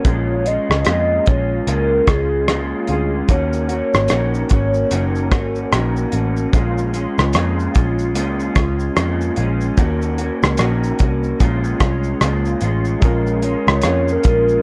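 Worn, warbling cassette tape colors this hazy, mellow bedroom pop excerpt, with pitch drift and a moderate studio reverb around the whole mix. At a relaxed 74 BPM in 4/4 with a light swing on the sixteenths, a cloth-damped, thuddy drum kit plays up front with hi-hat, tight kick, rim click and shaker, its top rolled off like a small room. A dark, round, foam-muted electric bass sits beside it with transformer saturation, while an electric guitar through a small old amp, slightly broken-up and compressed, adds picked, lo-fi accompaniment with ensemble chorus and vibrato over Bbm7 and Ebm7 in Bb minor. A hollow, woody clarinet-like synth lead, soft and full-bodied with phaser and subtle chorus, carries the melody until 5.7 seconds. At 13.0 seconds a barky, slightly out-of-tune tine electric piano enters through its built-in speakers, and the synth lead returns at 13.4 seconds for a brief soft solo.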